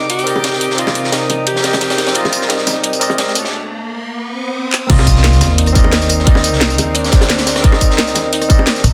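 A dense, heavily limited mix in a small room carries this rolling, lush liquid drum and bass excerpt at 175 BPM in C minor, where a breathy, whispered tenor saxophone melody with vibrato floats over barky tine electric piano accompaniment and distant sul tasto strings, the sax and piano both trailing digital delay, while a crunchy, saturated breakbeat kit, a garage kit with cracking snare, tambourine and handclaps, and tight high-tuned bongos drive a build-up with an electronic riser and swell, until the drop at 4.9 seconds brings in a woody pizzicato upright bass, an up-front layered electronic kick and an impact.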